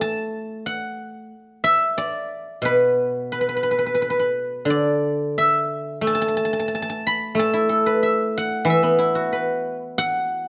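Flowing and pastoral, this brief passage of Chinese traditional music, cut from a longer piece, features a solo guzheng in the E shang mode. The tempo sits around 91 BPM in 4/4, though the playing moves with a rubato freedom that lets the phrases breathe. Played with fingerpicks, the acoustic guzheng sounds bright and silvery, its ringing notes spanning a range from B2 up to B5. The instrument sits up front, captured by close, detailed microphones that bring out every plucked string. A moderate recital hall reverb surrounds the sound and gives the 10.5-second passage a gentle sense of space.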